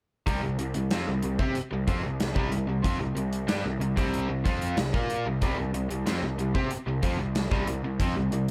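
A gated 80s drum kit sits up front in this swaggering, confident classic rock excerpt, its medium-tuned snare, tight kick and hi-hat punching through a bright, gated stone room with an airy, polished sheen. Beside it, a fuzz picked electric bass growls from C2 to C3, direct and amped with an overdriven edge that keeps it just as forward. Two cranked stack guitars sit further back, each playing a picked, overdriven riff between C3 and Bb4 on a C5 power chord. The groove moves at 93 BPM in a straight 4/4, tuned to A4 = 444 Hz, and a studio reverb adds space around the band. All four parts enter together at 0.3 seconds and carry a single section through to 8.5 seconds, in a passage cut from a longer piece.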